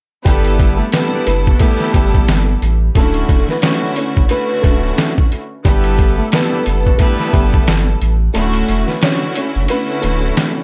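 Boom-bap hip-hop at 89 BPM with a swung 16th-note feel, soulful and confident, where a gritty, pitched-down sampler-style drum kit with a thumpy kick sits up front beside a deep, sustained sub bass with octave, while bowed studio strings with vibrato and a cassette-tape tint carry the G6 to Dmaj7 changes, a small fingerpicked nylon-string guitar plays the melody with delay, and a clear, vintage horn section adds octave-doubled stabs until 7.6 s before a break at 8.3 s, all in a dry sound.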